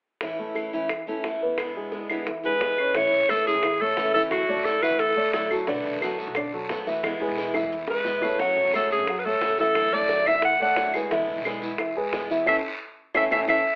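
A straight, sunny Cuban son and guajira groove of high-tuned bongos, woody claves and a raspy guiro carries a picked steel-string acoustic guitar and a dark, mellow baby grand piano playing arpeggios up front, while a thumpy pizzicato upright bass sits low in the background from 3.0 s and a bright, punchy jazz-style clarinet with light vibrato takes the melody at 2.5 s and returns at 7.9 s for a forceful solo through drum fills and a closing band accent, the mix colored by a telephone sound and a moderate large studio reverb.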